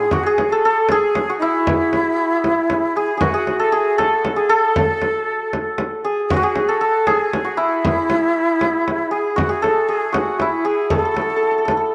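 Melancholic and hypnotic, this fragment of a Persian modal ensemble piece moves at 117 BPM in a straight 3/4, with a shimmering, ringing hammered santur carrying the melody up front while a breathy, reedy ney with vibrato traces a second line alongside it, a deep, saturated frame drum struck with hard hands underpins them, and a wet spring reverb envelops the ensemble.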